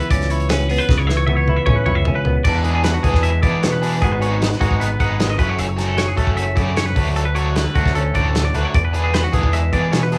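A growling, overdriven fingered bass underpins this playful, bright math rock and midwest emo excerpt at 153 BPM in 4/4, with twangy, compressed clean arpeggios on electric guitar ringing over a clean semi-hollow guitar's warm accompaniment, while a loose, up-front indie drum kit with dark cymbals and a punchy kick plays a fill from 0.9 to 2.5 seconds before a biting, double-tracked overdriven guitar riff with harmonic tremolo enters at 2.6 seconds, all moving through C#m7, E7, G#m7, F#m7 and Dmaj7 in a light small-room reverb.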